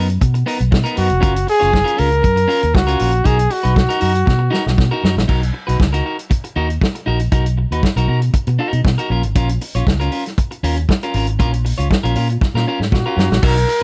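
Joyful and celebratory, this disco excerpt puts a growly, amped fingered electric bass and a tight, mid-forward soul drum kit up front beneath a slightly broken-up, compressed electric guitar, while a close-miked flugelhorn with scooped notes plays a jazz-style solo melody from 1.0 to 5.0 seconds and returns at 12.9 seconds, with drum fills closing each section and little reverb throughout.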